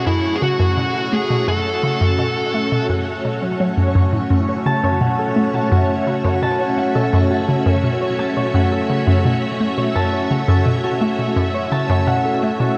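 Hypnotic and expansive, this excerpt of ambient, sequencer-driven space music moves at 85 BPM in a straight 4/4, resting on a single F# minor chord and tuned slightly flat of standard pitch. A dark, fuzzed lead guitar, picked and compressed with distortion, shimmer reverb and tape echo, sounds a brief melody between E4 and A4 only in the opening 2.9 seconds. Beneath it, a lush vintage string machine holds sustained sawtooth chords with a sub octave and slow attack, colored by phaser, ensemble chorus and shimmer reverb, running through the whole passage. A hollow, nasal square-wave pluck drives a bouncy low riff from F#2 to A3, detuned with a noise layer and a moving notch, sitting up front with chorus and tape echo. From 4.5 seconds a bright, thumb-plucked Celtic harp adds ringing arpeggios higher up, washed in shimmer reverb and tape echo, while a huge ambient reverb with an eight-second tail bathes the scene in vast space.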